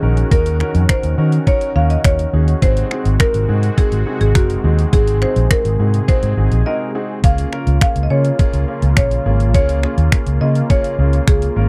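A straight 4/4 groove at 104 BPM drives this confident dance-pop clip, cut from a longer piece, with a detuned 8-bit drum machine entering at 0.2 s with a thumpy kick, hi-hat and finger snaps that sound sampler-like, tape-tinged and up front. Beneath it, a vintage muted fingered electric bass sits dark, round and punchy, its amped tone foam-muted and pumping against the sidechain. A marimba struck with hard mallets carries the melody in a woody, percussive, band-limited voice, while a clear, polished baby grand piano plays pumping accompaniment. In the background, a filtered supersaw swell holds soft-attack chords that evolve with detuned sawtooth and square-wave layers and a sub octave. The harmony moves from Ebm7 to Ab7, and after a short break from 6.7 to 7.2 s it settles on Db6, all in a dry, close, 1970s-style studio sound.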